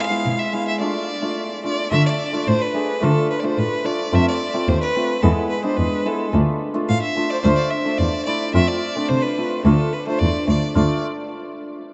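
Klezmer in D dorian sharp4 at 108 BPM in a straight 2/4, this bittersweet, soulful excerpt from a longer piece sets an intense, close, up-front violin with airy bow and vibrato on the melody above a shimmering, ringing hammered dulcimer, with a woody, dark cello taking the bass from 0.3 seconds. A break from 0.8 to 1.9 seconds leads into a longer passage moving through F, E and Dm. The whole is bathed in a wet cathedral reverb that places the players in a vast, echoing space, its top end rolled off above 8.0 kHz.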